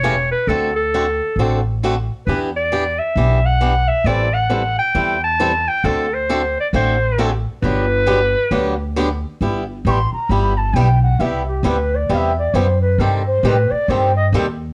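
A clear clarinet with vibrato and scooped notes opens this lively, playful jazz manouche cut from a longer piece, joined from the start by a boxy, freshly strung acoustic guitar picking swing accompaniment and a woody, thumpy pizzicato upright bass on gut strings. At 134 BPM in 4/4 with a swung eighth-note feel in G major, the clarinet sounds roomy and distant yet sits up front alongside the guitar and bass. The harmony moves through D7, Em9, Am7 and back to D7 before settling on Gmaj7. The clarinet drops out at 8.9 seconds, and at 9.9 seconds an airy, reedy bamboo bansuri takes a tongued, straight-toned solo over G6, Cmaj7 and Cm6 changes, its bright voice set back in the distance. Light reverb surrounds the recording, which carries the worn, warbly pitch drift of old cassette tape.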